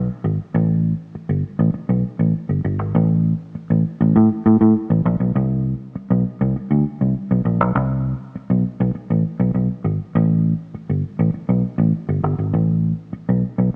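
A vintage muted electric bass, played with the fingers, carries this funky, energetic funk excerpt alone from 0.0 to 13.7 s at 100 BPM in a straight 4/4, its dark, round, foam-muted and amped tone sitting up front between G1 and A2, tuned slightly flat to A4 = 439 Hz, and set in a moderate echo-chamber reverb with a small-speaker sound and a faint mains hum.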